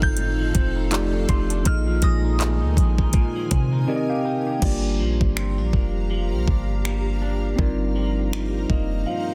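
A dense, heavily limited digital mix carries this longing, sensual slice of contemporary R&B at 81 BPM with a swung sixteenth feel: a knocking, up-front electronic drum kit with metallic hats, finger snaps, handclaps, crash and a softly clipped snare sits atop a deep, boomy 808-style bass, while a mellow tine electric piano, a twangy, scooped clean electric guitar bathed in lush chorus and tape echo, and a cloudy, evolving granular pad with sidechain pumping move through chords from F7 to Gm7. A glassy, warbling FM synth bell shimmers above until about 3.5 seconds, and a soft, round pluck in the background lingers until about 3.7 seconds, and the electric piano steps forward with fills at 3.5 and 8.3 seconds.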